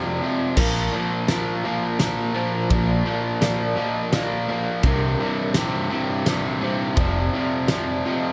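A slow 84 BPM waltz-time pulse from a loose acoustic drum kit with a fat snare, punchy kick and dark cymbals, entering at 0.6 s alongside a growly picked bass, carries this cinematic, melancholic post-rock passage, where two bright overdriven guitars play a riff, one sitting up front, over chords moving from Fmadd9 through Bb and Cm, while a ringing vibraphone played with hard mallets spins tape-echoed arpeggios in the background and a very quiet, ethereal detuned pad sustains beneath, all in light small-room ambience.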